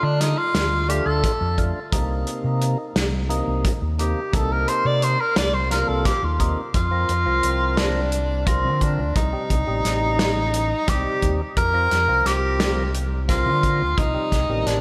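In a straight 7/8 at 174 BPM (eighths), this brooding, intricate progressive instrumental in C dorian, cut from a longer piece, opens with a clear tenor saxophone soloing with light vibrato and scooped notes until 6.7 s, its lines carried by slapback echo and delay, over a percussive tonewheel organ with key click and slow rotary speaker, an overdriven, round, punchy fingered electric bass, and a soul drum kit with a tight kick and rolled-off top that enters at 0.2 s, while the harmony moves from Dm and Cm7 to alternating Fsus4 and Cm, the mix bathed in concert hall reverb for a big arena sound.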